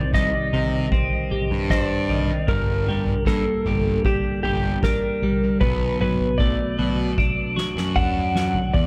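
Hypnotic and trippy, this psychedelic rock excerpt moves at an unhurried 77 BPM in a straight 4/4, cut from a longer piece and drifting from Cm through Gm to Bm7. A dark, slightly broken-up electric slide guitar carries the melody through analog delay, while a bright, twangy twelve-string electric guitar plays a clean, picked riff through flanger, and a fuzz-laden picked bass with overdrive sits up front beneath them. A soft-mallet drum kit with a boomy kick, fat snare and toms rolls into a fill from 7.2 to 8.7 seconds, all set in a small room ambience within an echo-heavy mix.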